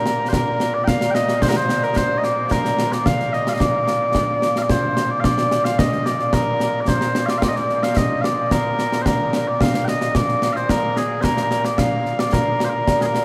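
A huge, wet ambient reverb fills this recording, and the whole performance sounds as if heard from further back in a vast room, with a long tail hanging in the air. It is a proud, stirring piece of Scottish traditional pipe music in Bb major, moving at 110 BPM in a straight 4/4, cut from a longer piece. Mellow small bagpipes carry the melody up front from the start, with a sweet, continuous tone and vibrato, ranging from Bb2 up to G5. Concert snare drum and concert bass drum join almost immediately at 0.1 seconds, sitting up front with an acoustic, live-room quality and bright cymbals. Both parts play together through to 13.2 seconds in a single unbroken section.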